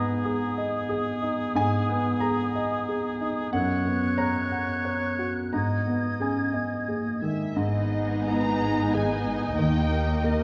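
Cinematic and rubato in 3/4, this longing, moving passage opens with a clear, up-front concert grand piano beneath an airy flute section, a close-miked solo oboe and a dark clarinet, all sitting in a moderate scoring-stage reverb. At 7.2 seconds muted violins take the melody, veiled and con sordino with vibrato, and by 7.6 seconds they are joined by a second violin line, lush muted violas, muted cellos and double basses, and a ringing, very quiet fingerpicked harp. The piano's deep bass and short sustain anchor the whole fragment, which moves through minor and suspended harmonies toward a closing D# chord.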